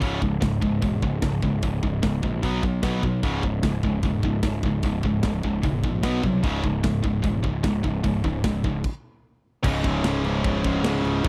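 A dark, heavy metal passage in C# minor at 150 BPM opens with two bright, distorted picked guitars, one high-gain and one tight, riffing in the background, while a growly fuzz bass sits up front beside an acoustic drum kit with a medium-tuned snare, tight kick and big-room, mid-forward presence. Everything halts from 8.8 to 9.6 seconds, then a double-tracked, compressed third guitar joins the riffing at 9.6 seconds. The dry, close 1970s-style recording cuts off at 11.3 seconds.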